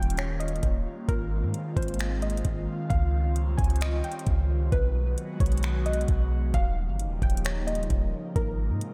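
Atmospheric cloud-rap hip hop at 132 BPM in a half-time 4/4 feel, dreamy and floating in Ab major, where a soft, round pluck melody with chorus and tape echo drifts over an airy, breathy pad whose detuned chords shimmer with chorus, phaser and sidechain pumping, while a deep, boomy 808-style bass and an up-front electronic R&B kit of knocking kick, metallic hi-hats and finger snaps anchor chords such as Eb9, Dbmaj9#11 and B6 in a lush hall reverb, all within a brief cut from a longer piece.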